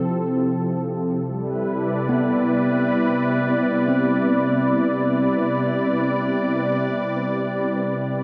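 A warm, detuned sawtooth pad sits up front with a slow attack and a chorus-thickened tone, holding smooth sustained chords that move from F/C to Cmaj9 at 1.2 seconds in this luminous ambient fragment cut from a longer piece. Beneath it, a bright, clean tine electric piano plays arpeggios through analog delay, heard as if through built-in speakers. Both parts run the full 8.2 seconds, and an echo-chamber reverb bathes the mix in a wet, echo-heavy haze.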